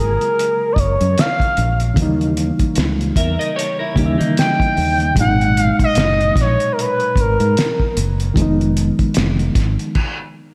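Soaked in lush hall reverb for a dreamy, late-night mood, this soulful R&B and neo-soul fragment sets a smooth sawtooth lead with portamento, vibrato and chorus up front over a barky, reedy electric piano with fast tremolo, a round, dark fretless bass and a cloth-damped, muffled drum kit with a fat snare and gritty saturation, while a clean, picked electric guitar adds a chorused second line from 3.2 to 5.1 seconds before a stop at 10.0 seconds.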